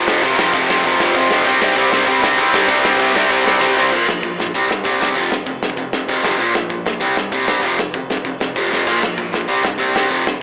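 Filtered to a telephone-like tone with light reverb, this rowdy, energetic punk rock fragment opens with a bright, compressed, up-front distorted electric guitar riff, a double-tracked raw garage guitar and a very quiet sludgy guitar that both drop out at 3.9 seconds, a growly overdriven picked bass in the background, and a loose indie drum kit with dark cymbals, a punchy kick and a pumping room sound that plays fills at 3.6 and 8.7 seconds, all over chords cycling through F5, C5, Bb5 and C.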